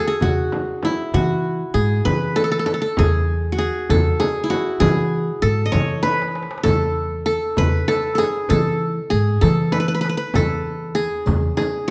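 A bright, plectrum-plucked, triple-stringed qanun opens this festive, stately Arabic maqam ensemble passage in E maqam ajam at 0.0 s, sitting up front at 65 BPM in a straight 6/8, soon joined by a woody pizzicato upright bass, a crisp, saturated metal-shell darbuka in the background and a deep, band-limited vintage frame drum, until a drum fill at 6.0 s ushers in a very quiet small-room riq with jingles at 6.7 s, the ensemble heard through a moderate recital hall reverb.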